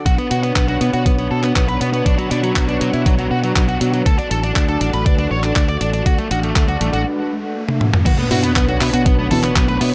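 A dark, fuzz-drenched lead guitar carries the melody through this melodramatic, bittersweet italo disco excerpt, its distorted tone trailed by delay over a straight 120 BPM groove in B minor. Beneath it, a bright, growly fingered electric bass with tube saturation drives the low end, while a thumpy sampler-style kick and a clean 12-bit drum machine of congas, handclaps, hi-hat, toms and crash cymbal sit in studio reverb. Lush vintage string-machine chords and mellow, round synth brass stabs, both softened by chorus, fill the background as the harmony moves from Bmadd9 to D. A riser builds from 6.7 seconds and a drum fill leads into an impact at 8.1 seconds, where the chords return to Bmadd9 and a faint, warbling lo-fi pluck begins its arpeggios. The production is dark and cushioned with light digital ambience.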